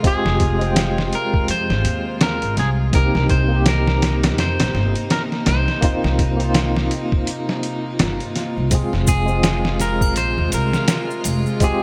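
A brightly produced 1980s-style digital sound with light reverb frames this dark, cinematic trip hop excerpt in F minor at 83 BPM with a swung 16th feel, where a muffled, pitched-down sampler drum kit with a thumpy kick sits up front beside a woody pizzicato upright bass, a clean tine electric piano with tremolo and earthy background chamber strings hold the Fm to Cm7 chords, a twangy, slightly broken-up electric guitar carries the melody through 12-bit grit and tape echo, an electronic swell enters at 7.7 seconds, maracas and triangle join at 8.7 seconds, and a tense, very quiet string-like drone appears at 10.6 seconds.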